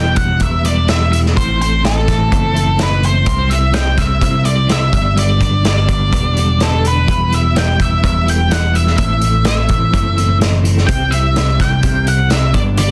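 A dark, cathartic quiet-loud alternative rock excerpt at 126 BPM opens with a distorted octave-fuzz lead guitar carrying an up-front melody over a bright, twangy twelve-string electric guitar playing compressed arpeggios through tremolo and slapback echo, a growly, punchy overdriven picked bass, and a loose indie drum kit entering at 0.2 seconds with a tight kick and pumping small-room sound, all moving through Em, Am, C and G in a dense, heavily limited modern mix with light reverb.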